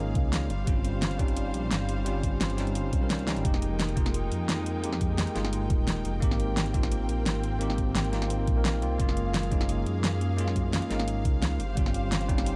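A straight 4/4 liquid drum and bass groove from a thumpy, gritty kick and an up-front electronic kit with a fat snare and metallic hi-hats, marked by a drum fill at 3.3 seconds, carries this lush, dreamy excerpt, where a deep, rumbling detuned saw bass with tube saturation sits beneath bell-like tine electric piano accompaniment in dub echo and a smooth, rich bowed string section pumping with sidechain, all in a dark, close production.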